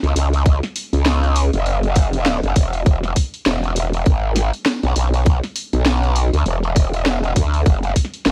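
Swaggering and funky, this glitch hop excerpt struts at 100 BPM with a 16th-note swing, as a growling, wobbling growl bass with chorus and tube saturation stays up front from E1 to D2, a tight electronic kick drum enters at 0.5 seconds, and a drum and bass kit adds hi-hat and a cracking snare, all in a dry, gritty hardware recording flecked with vinyl crackle.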